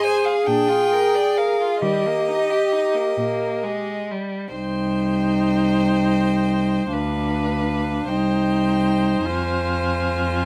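A focused, close cello sits up front in this slow, lyrical classical movement for string quartet, its bowed bass line sung with vibrato beneath the ensemble. Above it, a clear violin carries the melody high in its range with a smooth, even tone, while a second violin, set more distant and rich in colour, traces a supporting line. The viola fills out the accompaniment in the middle register, matching the cello in level and bowing with vibrato. In a rubato 6/8 lilt at roughly 43-53 BPM in dotted quarters, the music begins in Eb major and turns to C minor at 4.5 s, moving through Bdim/D and back to Cm before settling on Fm near 9.3 s. All four players bow together throughout this 10.5-second passage cut from a longer piece, framed by a moderate studio reverb that gives the quartet a warm glow.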